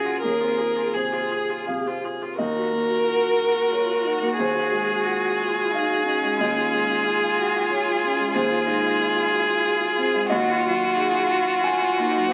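A rubato pulse in three sets the gentle, unhurried sway of this short neoclassical passage for piano and strings, which is cut from a longer piece and carries a reflective, melancholic mood. A solo violin sits up front with the melody, its bowed tone rich, focused and shaded with vibrato. Beneath it, a single cello plays a second line in the background, distant and focused, while a lone viola adds smooth, even accompaniment from further back. A felt-muted upright piano supplies soft, mellow, intimate support across a broad register, its boxy, thin-felt sound carrying audible action noise. The harmony drifts over a held Eb bass through minor, seventh and added-ninth colours, with a brief opening section giving way to a longer one at 2.4 seconds. Everything sits in a small room with moderate reverb, and the whole recording is coloured like a very old 78 rpm record, with vinyl crackle throughout.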